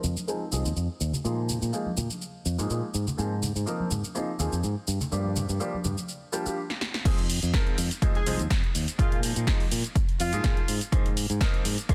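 A punchy, tape-warm electronic kick lands up front at 7.1 seconds, as this groovy, sensual filtered disco house fragment in F dorian at 124 BPM hits its drop after a filter sweep and a drum fill. Underneath, a growly fingered electric bass and a brilliant, worn grand piano, soaked in phaser, pump with sidechain over Fm7, Bb7sus4 and Ab69 chords. A lightly swung analog drum machine plays snare, hi-hat, cabasa and crash, while soft-handed congas and egg shaker ring in the background until 6.5 seconds, and a tight, close-miked horn section with 12-bit sampler grit and delay adds a short line from 8.2 seconds, all within a dense, heavily limited modern master.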